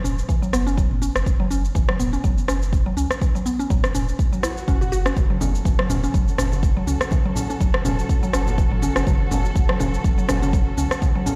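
A swung, hypnotic afro house groove drives this excerpt, built on an up-front, deep electronic kick and a produced afro-pop kit of cabasa, rim click and toms, with a round sine sub bass pumping beneath the arpeggios of a woody, nasal mallet-like synth pluck carrying chorus and dub echo. An electronic swell at 4.4 seconds leads into the entry at 5.2 seconds of dark, distant symphonic strings holding lush bowed chords with vibrato, alongside bright, saturated congas played with soft hands in the background. The mix sits in a stone-room reverb, as if played on a big sound system in a bare room.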